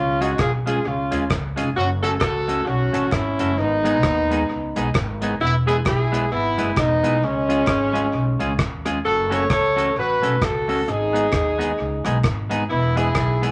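Ska with an energetic, driving swing, cut from a longer piece, led by a punchy, up-front horn section that carries the melody with light vibrato. Beneath it, a woody pizzicato upright bass and a clean, bright semi-hollow electric guitar accompany a dark, dry reggae kit of hi-hat, tight kick and rim click treated with dub echo, while a very quiet, crisp group handclap sits distant in the background. The band plays inside a wet club reverb, cycling through a C#, F#m, G#m, E progression.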